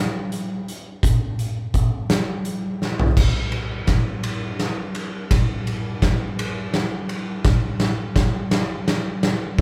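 Soaring and euphoric, this rock fragment in 6/8 features a single oversized, low-tuned acoustic drum kit that enters at 0.3 seconds, its punchy kick, medium-tuned snare, toms, hi-hat, ride and dark crash cymbals sounding saturated, gritty and up front in a big, pumping room with light reverb, as a fill at 2.8 seconds tips into a build-up that carries the kit from 3.2 seconds to the cut.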